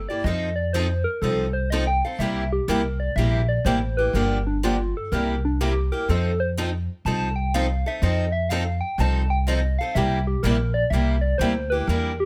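Lively and playful, this short cut of acoustic string swing in the jazz manouche style moves at 124 BPM in C mixolydian, with a soft struck synth lead taking a solo throughout, its round, keys-like FM tone warbling with chorus and tremolo over chords such as F7, C7 and Gm7. A woody, thumpy upright bass with gut strings sits up front, while two picked steel-string parlour guitars supply bright, boxy accompaniment with audible finger squeak. The sound is close and detailed, with little reverb.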